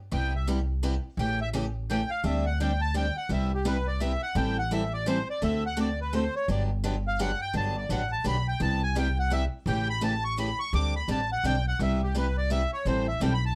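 Close, detailed microphones and light reverb frame this playful, lively jazz manouche waltz at 170 BPM in G major, where a reedy, sweet accordion with light tremolo tuning carries the melody as a solo throughout, a bright, freshly strung picked steel-string acoustic guitar supplies the accompaniment, and a woody, growly pizzicato upright bass sits up front beneath them, all cycling through Cmaj7, A7, D7sus4 and Am7 changes in a swung 3/4 feel cut from a longer piece.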